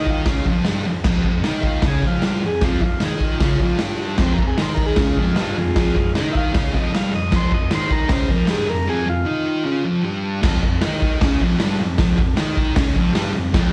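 Heard as a live club gig through the venue's PA, with light reverb and small-room ambience, this cut from a longer garage rock piece has a swaggering, gritty drive at 154 BPM in F minor. A buzzy, overdriven combo organ carries the melody through phaser and slapback echo, taking a solo that reaches a break at 8.9 seconds before it stops at 9.8 seconds, while a thick, double-tracked fuzz guitar plays a distorted riff up front with its own slapback echo. The raw garage drum kit also sits up front, saturated, with a punchy kick, medium-tuned snare, hi-hat and crash cymbal under a rolled-off top end.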